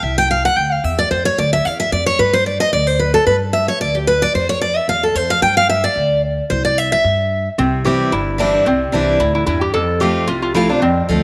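A bright, full-bodied picked steel-string acoustic guitar opens this rustic, virtuosic bluegrass cut, taking a solo up front from the first second while a woody, growly pizzicato upright bass plays underneath. The tempo is a racing 222 BPM in 4/4 with a light swing on the eighth notes, in C major, tuned slightly low to A4 = 437 Hz. The harmony moves through C, Dm9 and G5 before returning to C. At 7.6 seconds a lap resonator guitar enters up front with a metallic, nasal slide melody played with fingerpicks, as the chords shift toward F. A moderate echo-chamber reverb and a small-room ambience give the acoustic instruments a close, lively space in this short cut from a longer piece.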